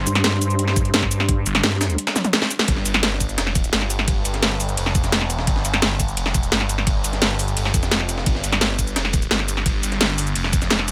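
A driving 172 BPM straight 4/4 groove from an up-front drum and bass kit with cracking snare and metallic hats, a knocking electronic kick, and a very quiet, gritty pitched-up breakbeat layer anchors this mechanical, futuristic excerpt of dark technical drum and bass, where a thick, swirling phased saw bass holds the low end throughout, a nasal vowel-sweep wobble bass flares briefly at the start, and a deep, moody pad with sidechain pumping sits in the background until 2.7 seconds, as a drum fill leads into the next drop.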